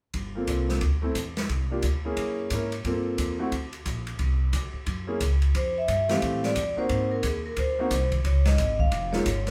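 A ringing vibraphone with medium-hard mallets, its motor off and close-miked, takes the melody at 5.6 s over a clear, up-front grand piano, a woody, thumpy pizzicato upright bass on gut strings and an airy drum kit with dark cymbals and a boomy kick, in a swinging, warm small-group jazz cut at 178 BPM in F major, captured live in one room with a short, wet studio ambience.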